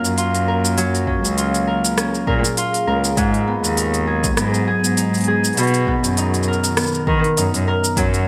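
Folktronica at 100 BPM in 4/4, with a gentle 16th-note swing, this short excerpt feels delicate and hopeful as it moves through F#maj7, G#m7 and Bmaj7. Up front, a ringing, fingerpicked Celtic harp plays arpeggios treated with digital delay, while a single bowed cello carries the bass with a soft attack, sul tasto tone and a pure, floating quality. Behind them, a warbling, lo-fi tape-like pad holds dark, nostalgic sustained chords, its slow attack and long release softened further by chorus and built-in reverb. An organic electronic drum kit of cabasa, crisp hi-hat and rim click sits forward in the mix, joined at 1.1 seconds by a deep, tape-warm electronic kick, both re-recorded in a large room. Light reverb and digital ambience surround the whole excerpt.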